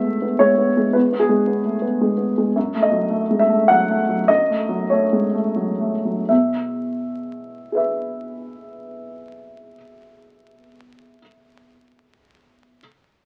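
Neoclassical minimalist piano, hopeful and tender, played in a rubato 3/4 between 82 and 114 BPM in E major, tuned slightly high to A4 = 441 Hz. A single dark baby grand piano carries the whole 12.8-second excerpt on its own, ranging from E2 to F#5, its mellow, short-sustained tone placed up front with the soft clatter of its action clearly audible. The harmony moves from E to F#m at 2.6 seconds, then settles back on E at 6.3 seconds, where a second passage begins after a gradual slowing from 1.7 seconds. A moderate studio reverb gives the intimate piano a modest sense of space. Over it all lies the character of a very old 78 rpm record, with vinyl crackle that lends the tender playing a fragile, aged quality.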